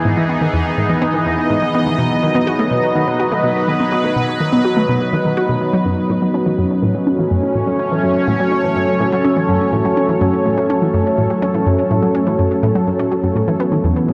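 A sweeping, resonant pad opens the piece, up front with evolving, detuned sustained chords touched by chorus. At 0.1 seconds a round, fast-attack analog pluck riff joins, roughened by vintage 12-bit sampler grit and trailed by tape echo. This cosmic, mysterious passage of sequencer-driven space music moves at 124 BPM in F# dorian, shifting from Emaj7 and B to F#m at 5.9 seconds, in a dreamy mix soaked in a huge reverb and marked by lossy compression artefacts, cut from a longer piece.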